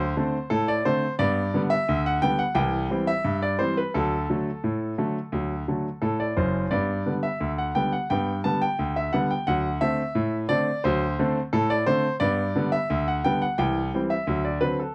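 A straight 2/4 pulse at 87 BPM drives this playful, jaunty ragtime excerpt in G major, cut from a longer piece and running just under 15 seconds. A solo concert grand piano carries everything, sounding clear, polished and up front with deep bass and short sustain as it spans F#1 to A5 through a cycle of G, C, D and D7 chords. The close, dry 1970s-style studio sound sits in a booth with a moderate touch of ambience.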